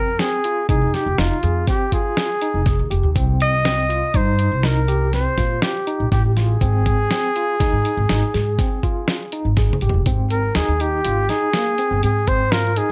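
Driving and bright, this progressive instrumental band piece moves in an uneven seven-beat meter with a straight feel, cut from a longer work. A mellow, close-miked trumpet carries the melody up front in a jazz style, with vibrato and scooped notes, and at 10.1 seconds it moves into a solo. Beneath it, an overdriven tine electric piano plays barky, gritty arpeggios through a combo amp, colored by fast tremolo, tape echo and plate reverb. A woody pizzicato upright bass with steel strings sits up front next to a compressed, sampler-style soul drum kit with a thumpy kick and a medium-tuned snare, which plays a fill at 9.6 seconds. A grainy tube shaker joins quietly in the background at 3.2 seconds, over chords that move from F minor to C minor to A-flat, and the whole recording sits in a light room reverb with a softened top end.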